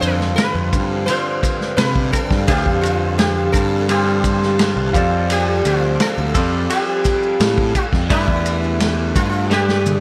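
A buzzing, shimmering sitar carries the melody through this hazy, hypnotic psychedelic rock passage, its plectrum-plucked line ringing with sympathetic strings and a slapback echo. Beneath it, a clean, twangy electric guitar plays a fingered riff colored by phaser. A fuzz-drenched picked bass sits up front with overdrive. A vintage drum kit with dark cymbals, a tight kick and a medium-tuned snare keeps a straight beat on kick, snare, ride and toms, and ends on a fill at 9.5 seconds. Very quietly behind them, a reedy tonewheel organ holds sustained chords through a slow rotary speaker, while grainy, mellow maracas add texture. The harmony moves from G7sus4 to Fadd9 and on to Gadd9 in this short section cut from a longer piece, heard within an audible studio ambience.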